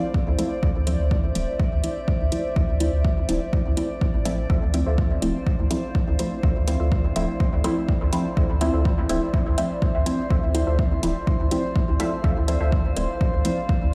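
A steady pulse at 124 BPM drives this nocturnal, hypnotic dub techno excerpt in D minor, with a punchy, overdriven electronic kick sitting up front and metallic, overdriven hi-hats ticking above it. Underneath, a soft, round sub bass anchors the groove, pumping against the kick along with most of the synth layers. A muted, detuned sawtooth chord stab carries the Dm7 harmony, its filter sweeping across the whole passage while chorus, phaser and dub echo smear each hit into the space. Above it, a dark, wave-folded analog pad holds sustained chords, joined by a faint, glassy texture of drifting overtones that adds a calm, bright shimmer through its own reverb. At 4.5 seconds a warbling, lo-fi pluck slips in from the background with an echoing riff, ending by 12.8 seconds, all heard through the large, reverberant sound of a big system in a bare room.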